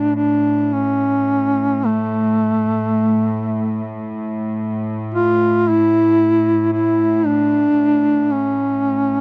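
Solemn and mournful, this short passage of Caucasian folk lament, cut from a longer piece, runs 9.2 seconds. A solo duduk carries the melody between A3 and F4, sitting up front with a close-miked, vibrato-rich tone and scooped notes in folk style. Beneath it, a chamber cello section holds a bowed drone on A2, its gut-string sound nasal and reedy with a smooth top, played in period style at a lower level. The warm pair sound together from the first second to the last. A light reverb touches the dry, close sound, which recalls a 1970s studio recording.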